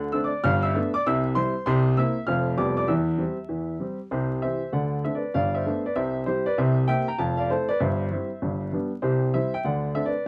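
Stride piano jazz in C major, exuberant and playful, this short excerpt cut from a longer piece rolls along at a brisk 195 BPM in 4/4 with a swing on the eighth notes. A clear grand piano plays alone for the full 10.3 seconds, sitting up front and ranging from deep bass notes to bright upper register. The harmony moves quickly through familiar changes, leaning on dominant chords like C7, G7/F and D7 with colorful touches such as G9 and Fmaj7. Two matching passages shape the fragment, the second beginning at 4.1 seconds. The sound is dry and close, with a modest booth ambience and vinyl crackle that gives it the character of a 1970s studio session, tuned slightly below modern pitch.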